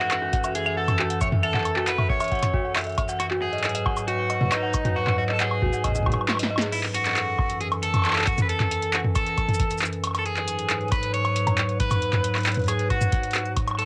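An electric guitar at the edge of break-up leads this cerebral, melancholic IDM piece, its picked, twangy melody sitting up front with a slightly broken-up edge, colored by cassette tape saturation and tape echo. Beneath it, a warbling, tape-like pad holds sustained chords throughout, its detuned square and triangle tones blooming slowly and lingering in a dark, nostalgic haze thickened by chorus and built-in reverb. An eerie, inharmonic FM bell traces arpeggios through the first half, stopping at 6.7 seconds after a drum fill. The rhythm runs at a straight 136 BPM in 4/4 on an analog drum machine with a punchy snare, metallic hats, handclaps, shaker, woodblock, toms and crash, joined by a deep electronic kick from 0.3 seconds. Set in G# phrygian and moving between F#m7 and G#m7, this section cut from a longer piece carries the lo-fi intimacy of a home cassette recording with light reverb.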